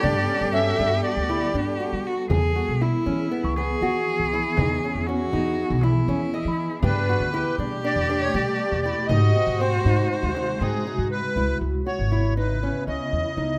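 Contemporary chamber music in an uneven 9/8, shimmering and restless, with a reedy, sweet accordion melody that drops out after 1.6 seconds and returns at 6.8, a clear bowed cello second line with vibrato until 11.1, a woody pizzicato upright bass up front, fingerpicked nylon-string guitar arpeggios, a cloudy, evolving granular pad holding sustained chords, a very quiet, bright frame drum, and a mellow, bell-like glockenspiel struck with rubber mallets in the background until 7.0, all in light reverb with close, detailed microphones.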